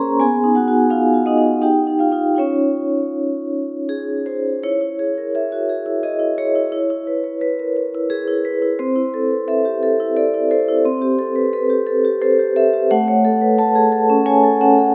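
A solo vibraphone played with medium mallets carries this playful contemporary classical piece, its metallic, ringing tone sitting up front with a medium motor vibrato as it moves in a rubato 3/4 at 77-90 BPM through chords such as Ebadd9 and Dbadd9, then shifts into a second section at 4.6 s that passes through E6, C#m7/E, Am9/C and A6, set in a moderate concert hall reverb with a 2.0-second decay in this short passage cut from a longer work.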